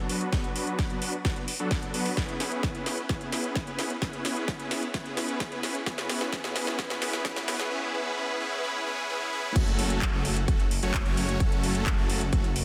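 Huge, detuned supersaw chords pump against an up-front punchy kick and a house kit with cracking snare and metallic hats in this anthemic, emotional festival progressive house excerpt at 130 BPM, moving from Bm to E6/B through a filter-swept build-up with a drum fill before a thick, saturated saw bass arrives on F#1 for the F#m drop at 9.6 seconds, all set in a lush hall reverb under a dense, heavily limited master.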